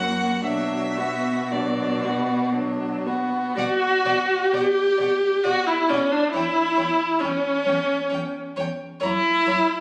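Classical string quartet in a slow, romantic vein, this yearning, melancholic fragment moves in a flexible three-beat rubato, passing from Bm through B5 and C#m/E to F#7. One violin sings the smooth, even melody on top while a second violin traces a close inner line beneath it. The viola sits up front with expressive vibrato and portamento, holding on to 9.8 seconds, and a distant cello bows the bass line, the whole quartet heard through a moderate recital-hall reverb with the casual presence of a phone recorded in the room.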